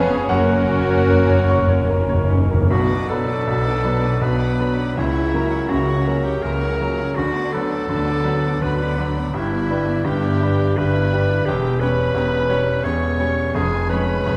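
Bathed in a wet scoring-stage reverb, this passionate, tragic romantic movement for piano and orchestra unfolds in a rubato 3/4. A clear, intimate baby grand piano sits up front on the melody with audible action noise, while two warm violin sections carry melody and a second line, and a bright, vintage solo clarinet adds a second line. A pure flute group, a mellow bassoon, a roomy French horn section and a background trumpet's stabs fall away by 2.4 s, as round soft-mallet timpani fill from 0.3 to 2.7 s, all over a very quiet viola section and a rich, bowed cello and double bass foundation.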